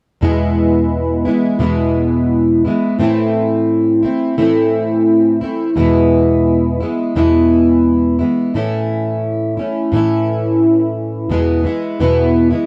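Pop at 86 BPM in E major, this sunny, easy-going clip cut from a longer piece features a double-tracked, fingerpicked plugged-in steel-string acoustic guitar with a full-bodied jumbo tone sitting up front, moving through E, Am, E and A before landing back on E at 11.3 seconds, all captured in a dry, close 1970s-style studio sound with light reverb.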